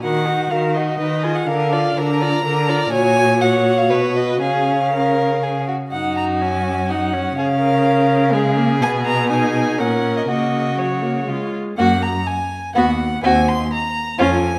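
A smooth, vibrato-laden first violin carries the melody in this stormy, restless excerpt from a quick classical-period string quartet movement in F# major, moving at 123 BPM in 3/4. A second violin adds an even inner line, and a focused viola fills in the accompaniment, while a bowed cello with a soft attack and expressive portamento holds the bass. The recital hall's reverb gives the group a lush bloom, and the music shifts into a new section at 5.9 seconds before the excerpt breaks off around 14.6 seconds.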